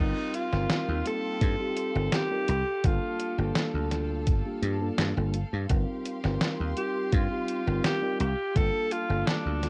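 A straight 4/4 groove anchors this woozy, nostalgic vaporwave excerpt, with a detuned 8-bit drum machine supplying hi-hat and snare from 0.3 s and a thumpy electronic kick joining at 1.4 s, both gritty with 12-bit sampler crunch and cassette tape. Up front, a punchy, bright thumbed slap bass with tube saturation sits beneath a clear, vintage alto saxophone melody bathed in tape echo, while a mellow tine electric piano with subtle chorus and analog delay moves between Eb69/G and Gm9. A rich, bowed string section lingers distantly in the background, and the home cassette recording carries a small-room haze.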